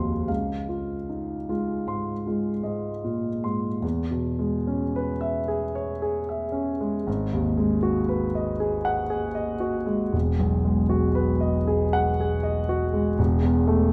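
This is an impressionist classical solo piano piece, luminous and dreamy, drifting at a slow 48 to 61 BPM in 3/4 with a rubato feel. A concert grand carries everything alone across the full 13.9 seconds, spanning E1 to C6 with a deep bass and an intimate, up-front presence where the audible action noise of the instrument can be heard. The opening rests in Db major on a Dbmaj9 chord before the music shifts to E major at 3.8 s, moving through E6, G#m7 and Emaj9. The fragment closes on a rootless F#m7/E voicing at 13.2 s, leaving the harmony suspended. The piano sounds smooth and vintage, set in a recital hall whose lingering reverb of 1.6 seconds adds a soft halo around each chord, and it is cut from a longer piece.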